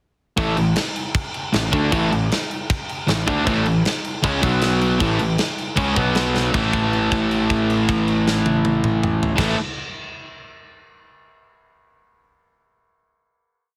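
Dry and heavily compressed with a radio-like sound, this short, complete punk rock piece charges along at 156 BPM in a straight 4/4 and A major, full of energetic, rebellious spirit. Two up-front electric guitars play a picked power-chord riff: one bright and distorted, the other warm, sludgy and overdriven, together covering the same range from A2 to D4. A fuzz-laden picked bass, growly and direct-amped, drives steady eighth notes and doubles the guitar riff. A tight metal drum kit with a medium-tuned snare, tight kick, crash cymbal and toms sits in a big room, pushing a fast punk groove. The riff moves between A and B5 until a drum fill at 6.3 seconds sets up a final A5 chord at 6.5 seconds, held until about 9.4 seconds.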